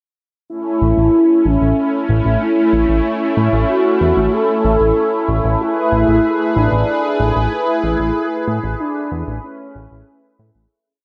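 Bathed in a moderate plate reverb, this short, dreamy and romantic synthwave piece in A major moves at 94 BPM, with a thick, nasal bass galloping in sixteenth notes up front, a smooth, detuned sawtooth pad holding sustained chords under chorus, and a warbling, vintage lead with portamento, vibrato, cassette tape color and tape echo singing a repeating riff melody over a shift from A to E/A at 5.6 s before the fade-out that begins at 7.3 s.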